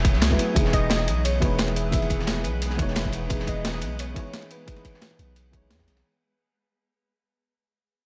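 A deep, sine-toned 808-style bass sits up front in this short, melancholic, rolling cut of liquid drum and bass at 175 BPM in 4/4, holding long, decaying notes under a drop that fades out from 0.6 seconds. A tight, layered electronic kick anchors the beat alongside two breakbeat kits: one sampler-style and overdriven, with gritty hi-hat and a medium-tuned snare re-recorded in a small room, the other a dark, saturated acoustic kit with a high-tuned snare and smooth, rolled-off ride cymbal. A felt-muted upright piano gives soft, boxy accompaniment with audible action noise, moving from F#m11 to Emaj7. Behind it, an ethereal, granular pad adds octave-up shimmer with slow-attack sustained chords, chorus and its own reverb. From 0.7 to 5.7 seconds a velvety, detuned sawtooth lead carries the melody, colored by chorus, tremolo and delay, and the whole mix sits in a studio reverb.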